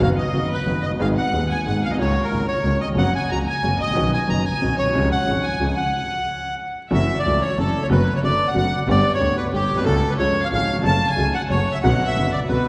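A reedy bandoneon carries the melody from the start over a gut-string chamber violin section with light vibrato, a clear, woody upright piano and a focused, distant bowed double bass, all set in a wet church reverb with vinyl crackle. This playful, elegant tango excerpt moves at 183 BPM in 3/4 with a rubato feel. After a full stop at 5.9 s, the music settles into F# minor at 6.9 s and continues until the cut at 12.7 s.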